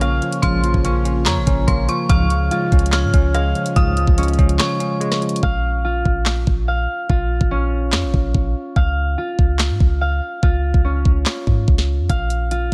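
Hip hop trap in Bb minor at 144 BPM with a half-time feel, dark and brooding, opens with an eerie, inharmonic synth bell, a bell-like tine electric piano and a very quiet breathy pad over a ringing fingerpicked concert harp, a deep boomy 808-style bass and an up-front trap kit with knocking kick, sharp snare and 12-bit sampler grit, plus a faint round synth brass stab from 0.4 to 3.9 seconds, before a break at 4.6 seconds gives way to a stripped-back passage where the harp, bass and drums carry on with the hi-hats muted until 12.1 seconds, all in a dry sound.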